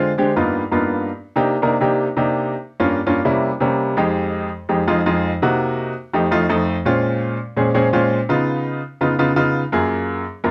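A clear baby grand piano plays alone from the first moment, opening a sultry, sophisticated jazz passage at a brisk 167 BPM in straight 4/4. In C minor, the piano moves through rich, altered harmony such as G7alt, Cm9 and C7b9, its notes ranging from F2 up to Bb4. At 4.0 s the music turns to F minor, passing through Fm7, F7 and Bbm9 before reaching Db7 and settling on Gbmaj7 near the close. The piano tone is natural, with a short sustain, and it sits up front in the sound. A moderate studio reverb gives the room a touch of space around it, and this short passage, cut from a longer piece, stops at 10.5 s.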